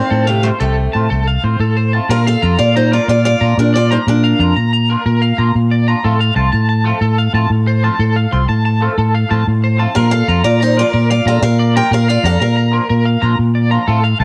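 This home recording on cassette has a light reverb and a homely, lo-fi character. It is a carefree, sunny highlife piece in 12/8 at 122 BPM, in Bb major, moving between F and Bb chords. A picked steel-string acoustic guitar sits up front with a bright melody, drops out at 4.5 seconds and returns at 9.9 seconds. Underneath, a clean, twangy electric guitar picks out accompaniment through a phaser. A second electric guitar at the edge of break-up plays high arpeggios with tremolo and tape echo. A growly, amped fingered electric bass sits prominently in the mix and anchors the groove throughout.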